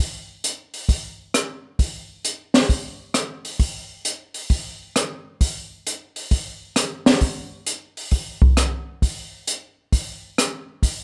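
Jazz drum excerpt at 133 BPM in 4/4, with a swinging, joyful mood and a 66% swing on the eighth notes. A single open jazz drum kit carries the whole passage, entering at 0.4 seconds and playing until 11.0 seconds. The kit uses hi-hat, kick drum, rim click and snare drum, with a high-tuned snare and a boomy kick. It sits up front in an acoustic, small-room sound. Light reverb adds a touch of air to the recording, which is cut from a longer piece.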